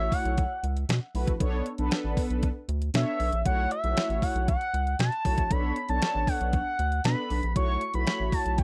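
A nasal, vibrato-tinged synth lead carries the melody over dark, phased synth brass and a rubbery, bouncy square-wave bass from the opening, with a thumpy, overdriven 8-bit drum machine entering at 0.1 s, in this dry, close, late-night slice of early-eighties boogie funk in B minor at 117 BPM that sways between F#m7 and Bm9 for a danceable groove.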